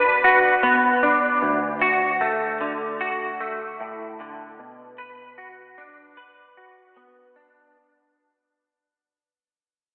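A clean, fingered semi-hollow electric guitar opens this brief rock excerpt with up-front arpeggios spanning D2 to B4, its compressed hollow-body tone thickened by ensemble chorus and slapback echo. At a straight 76 BPM in 4/4, tuned to A4 = 441 Hz, the chords move from Bm to D at 1.4 s and back to Bm at 4.6 s, with a euphoric, cinematic mood. The whole clip fades out over its 7.8 seconds inside a lush hall reverb, giving a big arena sound that is paradoxically filtered through a narrow telephone tone.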